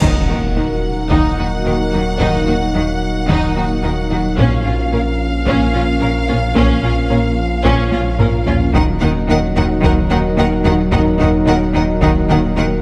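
A straight 4/4 pulse is driven by a very quiet taiko ensemble struck with hard sticks, which breaks into a fill from 7.9 to 8.7 seconds, while a huge, dark impact opens this vast, relentless hybrid orchestral and electronic film-score passage. Lush, bowed violins carry the melody with vibrato, supported by a second violin line, clear and distant violas, a dark French horn section holding chords, and a warbling, vintage analog drone with chorus. A round, tine-like synth pluck traces gentle arpeggios over a deep low end of smooth, close double basses, cellos with a smooth top, and a thick, saturated sub bass, all set in a moderate scoring-stage reverb.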